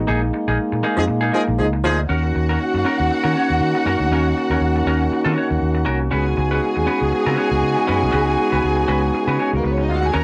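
The cassette-tape tone of a home recording in a small, moderately reverberant room frames this driving, glamorous disco fragment in E-flat minor at 119 BPM with a light sixteenth-note swing: a round, punchy fingered electric bass and a distant, roomy French horn section holding sustained chords run throughout, a bright, clean semi-hollow electric guitar plays accompaniment, a tight pop-style horn section with octave doubling adds up-front stabs between 1.0 and 2.0 s during a band accent, and a lush, bowed studio string section with vibrato carries a second line from 2.1 s over Ebm7 and Db7sus4 chords.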